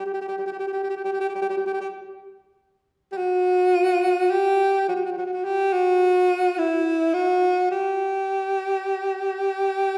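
Turkish music in 10/8 at 106 BPM, stately and warm, heard in a ten-second excerpt from a longer piece. A breathy alto saxophone plays solo throughout, up front and close-miked, keeping between E4 and G4 with a whispered subtone, vibrato, soft attacks and scooped notes in a jazz-inflected style. The intimate, clear tone sits in a wet recital hall reverb with a 1.4-second decay.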